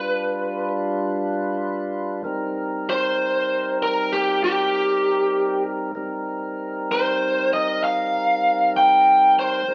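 This is a slow, mournful minor blues in C, cut from a longer piece and moving in a straight 12/8 at 65 beats per minute, tuned slightly flat to A4 = 439 Hz. A fat, clean tonewheel organ sits up front holding sustained chords through a slow rotary speaker, starting on G7 before settling onto Cm7 at 2.3 seconds. Over it, a biting, overdriven electric lead guitar carries the picked melody in a range from G4 to G5, standing louder than the organ. From 2.3 seconds until the end at 9.7 seconds, the guitar takes a solo, its warm tone cutting through the smoky atmosphere. The band plays live in one room, with a moderately large studio reverb and a dark top end that stops at 11.0 kHz, giving the sound a late-night, close-quarters feel.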